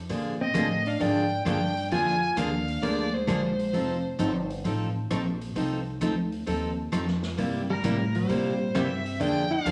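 Growly, woody upright bass opens this down-home western swing excerpt at 0.0 seconds, joined almost at once by a full-bodied, picked steel-string acoustic guitar playing the chords up front and a swinging big-band drum kit playing hi-hat, rim click and a medium-tuned snare, sitting low in the mix. At 0.4 seconds a single bowed fiddle carries the melody with a dark tone and light vibrato, placed up front yet with a distant quality. A clean, compressed hollow-body electric guitar, fingered, plays a second line beneath it. Both drop out partway through and return together at 7.7 seconds. At 132 BPM in a loping swung 4/4, the harmony moves from Bb9 to F9, C7 and Bb7, all bathed in a wet large-studio reverb.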